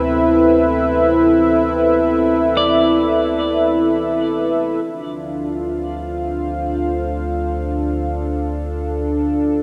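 Heard through cassette tape in a vast, echoing cathedral-like space, this reflective, melancholic ambient passage is built on a mellow, detuned analog pad that sits up front with chorus, holding smooth sustained chords that move from Amadd9/D to Dm7 at 4.8 seconds. Beneath it a deep, round sine sub bass fades out over the first half and fades back in over the second. Between 2.6 and 4.3 seconds a clean, picked electric guitar adds brief arpeggios trailed by diffuse ambient delay.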